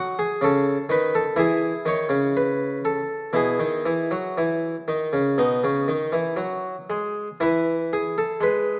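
A solo Italian-style harpsichord, plucked and brilliant with octave strings, sits up front in the mix and opens this serene, radiant fragment of a baroque-style suite movement in E major. Played with rubato in 4/4 at roughly 58-63 BPM, it moves from B13 through C#m9 and E/B before settling on E at 7.4 seconds. A moderate reverb, like that of a scoring stage, surrounds the instrument across its range from B2 to C#5.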